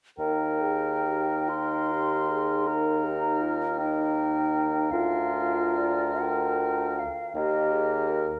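Heard through a dark, warm production on a moderately reverberant scoring stage, this tender, slow romantic movement for wind quintet, taken from a longer piece and tuned to A4 = 435 Hz, unfolds in a rubato 12/8 in Eb major at 44-54 BPM in dotted quarters, as a close-miked, hollow silver flute with a pure, tongued tone and vibrato carries the melody from D5 to C6 over a mellow, roomy oboe holding Bb4 as a second line, a smooth-topped French horn and a classical-style clarinet sitting in the background, and an up-front bassoon anchoring the bass, while the harmony moves from Eb to Bb/D at 4.9 seconds and settles back on Eb at 7.4 seconds.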